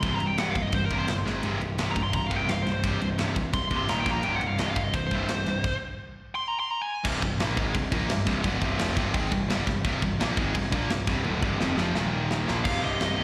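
Heard live through a venue's PA with a light touch of hall reverb, this epic, relentless heavy metal cut in C minor charges at 171 BPM, as a dark high-gain lead guitar with slapback and tape echo solos over a bright, double-tracked overdriven rhythm riff, a growly fuzz bass and a tight metal kit that adds drum fills, before the band hits a stop at 5.6 seconds and the lead returns only briefly at 12.6 seconds.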